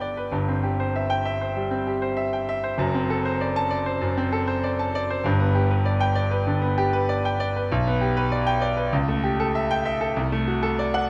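Heroic and sparkling, this short classical passage is a virtuoso piano study cut from a longer piece, moving at 97 BPM in 4/4 with a rubato feel. A concert grand piano plays alone for the full 11.1 seconds, its tone clear and open, with a deep bass and a presence that sits up front. Its range stretches from F#1 up to A5. The harmony starts in G major, passing from C/G through D7/F# to G, then shifts toward D major from 7.7 s by way of G/B, A7/C# and D7/C. Close, detailed microphones capture the instrument inside a concert hall whose moderate reverb gives the sound a natural sense of space.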